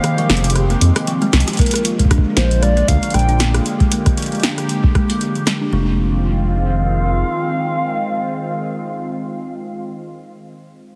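An intricate, glitchy IDM fragment at 116 BPM in F dorian, swung on the 16ths, opens on a break, with a warbling, nostalgic square-wave lead with vibrato and a swirling, nasal phased analog pad pumping under sidechain, while a woody, thumbnail-plucked kalimba ripples arpeggios through a low-pass filter and tape echo over the metallic hats, rim clicks and punchy snare of a tape-warm electro drum machine. A round, mellow analog bass enters up front just after the start. A drum fill and band accent at 1.3 s lead into the Bb7 section at 1.6 s, where a deep electronic kick joins up front and a filter sweep moves across the kalimba. The Fm7 harmony returns at 5.7 s, and once the bass fades the pad and lead carry on alone toward the end, all pressed into a heavily compressed, radio-like sound with light reverb.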